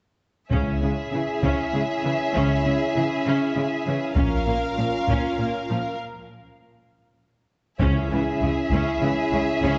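Heavy-sticked, vintage-toned taiko drums drive this epic, heroic orchestral film-score cue at 99 BPM in 3/4, as an expressive violin section sings the melody over a distant second violin line, lush violas, smooth cellos and warm sustained French horn chords moving between C#m and A#m, while the double basses drop away at 4.4 s and return at 7.8 s alongside close, dry hard-mallet timpani for a build-up that follows a short break, all set in a moderate concert hall.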